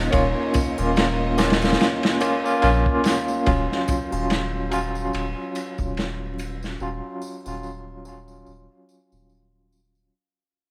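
A rough home-demo mix with vinyl crackle and studio reverb frames this dark, melancholic trip hop fragment, which fades out from 3.5 seconds. An overdriven tine electric piano sits up front, barky and bright with fast tremolo and tape echo through a combo amp, over a round, deep dub sub bass and a crunchy breakbeat kit of tight kick, medium-tuned snare and dark ride, saturated with vintage 12-bit sampler grit, which drops out at 6.8 seconds. A very quiet felt-muted upright piano offers a soft, intimate melody until 2.6 seconds, while a lush, bowed symphonic violin section holds brief sustained chords and tambourine and triangle stay in the background.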